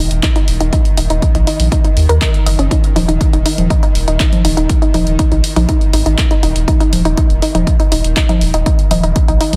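A straight 4/4 pulse at 121 BPM drives this melancholic, propulsive melodic techno cut. It is built on a heavy, layered electronic kick up front and a punchy analog drum machine playing congas, handclaps and hi-hat, both tape-warm and re-recorded in a small room. A round, deep analog bass and a woody, nasal wave-folded pluck spinning dark arpeggios with subtle chorus and dub echo both pulse with sidechain pumping, while a tense, string-like bowed drone on Eb3 sits in the background with vibrato, its own reverb and the same pumping, inside light reverb, digital ambience and a dense, heavily limited modern master.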